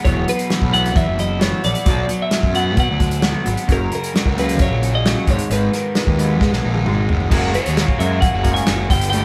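Jangly and upbeat, this indie rock excerpt at 132 BPM in 4/4 sets a clean, twangy, compressed twelve-string electric guitar melody above picked riffs from a dark, slightly broken-up guitar through a small old amp and a bright overdriven guitar, with an up-front fuzzy, overdriven picked bass and a loose acoustic drum kit with tight kick and medium-tuned snare that plays a fill from 6.4 to 7.3 seconds, the band playing live in one stone room with moderate reverb as the chords move from Esus2 through Bm, F# and G#m to F#add9.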